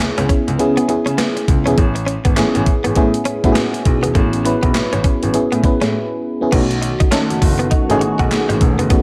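A swung sixteenth-note groove at 101 BPM in 4/4 drives this upbeat, flirty new jack swing excerpt in A major, built on a gated 80s digital drum machine whose thumpy kick, gated reverb snare, handclaps, hi-hat and crash cymbal sit up front with a tape-warm, sampler-style punch. A baby grand piano carries the bass line with an open, long-sustaining tone, while an FM electric piano with tremolo supplies warbling, mellow accompaniment that is vintage in character and also placed up front. Set further back, a direct-recorded clean electric guitar plays a compressed, scooped, picked riff touched with subtle chorus. The harmony moves from C#m7 to Amaj9 at 1.8 seconds, a brief break arrives at 5.9 seconds, and at 6.5 seconds the music shifts to B7 as a sweeping resonant pad enters in the background, its detuned sawtooth layers evolving through a filter swell with a slow attack and chorus. The whole sits in a digital ambience that frames the R&B arrangement.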